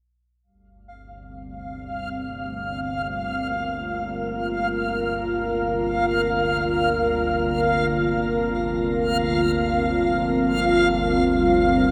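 Unsettling and dark, this dark ambient drone piece in G minor drifts in free time, cut from a longer work and set in a vast, echoing cathedral-like space with a long, wet reverb. An organ-like drone enters first at 0.9 seconds, low in the mix and spanning G1 to D2, its detuned, warbling sine tone thickened by ensemble chorus and carrying a calm, vintage character. At 1.4 seconds a deep, full-bodied analog pad arrives up front with sustained chords from G3 to D5, its detuned sawtooth and triangle layers and sub octave evolving under chorus and shimmer reverb. Moments later, at 1.7 seconds, a reversed, swelling texture holds a high F5, its granular, mellow, dreamy tone bathed in built-in and shimmer reverb. The passage rests on a single G minor chord while a fade-in on the synth drone unfolds across the whole span, all three parts sustaining through to the end.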